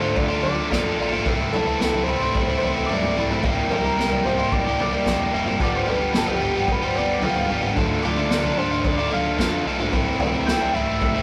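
Indie rock with a bittersweet, cool mood, this short cut from a longer piece rides a straight 4/4 groove built on a bright, scooped, double-tracked overdriven electric guitar riff sitting up front, with a dark, round overdriven bass punching in the background. Above it, a gritty, screaming sawtooth synth lead with chorus and vibrato carries the melody in a guitar-like voice, while a distant, roomy acoustic drum kit played with bundle sticks works kick, snare and toms from 0.2 seconds. The chords move from Dm through Am/C, C7(no3) and G7 back to Dm, all set in a stone room with a rough rehearsal-room sound and saturated character.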